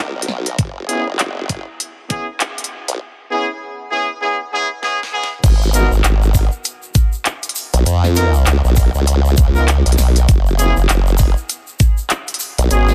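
A saturated, sawtooth-edged wobble bass with a formant filter and chorus opens this playful, gritty glitch hop at 99 BPM. It is soon joined by a knocking, up-front electronic kick, a pop drum kit with fat snare, crisp hats, handclaps and crash, and tight, smooth-topped horn stabs carrying 12-bit sampler grain, tape echo and sidechain pumping over a swung 16th-note feel. A build-up capped by a drum fill gives way to the drop at 5.4 seconds, where a close, bright egg shaker enters in the background, all within a dry, dense and heavily limited mix.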